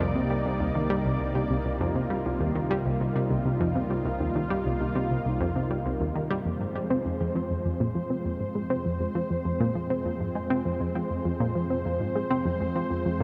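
Hypnotic and mysterious, this excerpt of ambient, sequencer-driven space music moves at 100 BPM in a straight 4/4, resting on C minor before shifting to F minor at 6.5 seconds. An up-front analog pluck carries the riff throughout, its round sawtooth and square tone reinforced by a sub octave, with a fast attack and short decay, and it is coloured by chorus, tape echo and a gritty vintage 12-bit sampler edge. Alongside it, an equally up-front lush unison pad holds sustained chords, thick and warbling from detuned sawtooth voices with a slow attack and long release, treated with chorus. An analog drone sits in the background on a low C, a mellow, nasal pulse-width-modulated tone with its own chorus, dropping out of the mix at 6.4 seconds. From 6.5 seconds a filter sweep moves across a synth arpeggio sound as the harmony settles onto an F minor chord. The whole is bathed in a wet cathedral reverb with a 6.1-second decay, placing the parts in a vast, echoing space.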